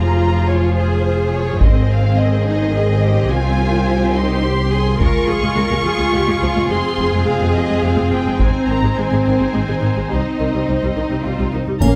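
Full string sections open this dark, epic orchestral film cue in a slow 6/8 at 71 BPM: lush, vibrato-laden violins carry the melody and a second line from a distant place, while intense violas, close cellos and up-front double basses fill out a brooding progression that moves from F minor through A-flat, C minor and D-flat. Heavy-sticked taiko drums enter at 1.6 seconds, dry and close, adding weight under the bowed ensemble in a light reverb. At 11.8 seconds a tight, shadowy French horn section and a soft triangle strike a sudden accent as this fragment of a longer piece cuts off.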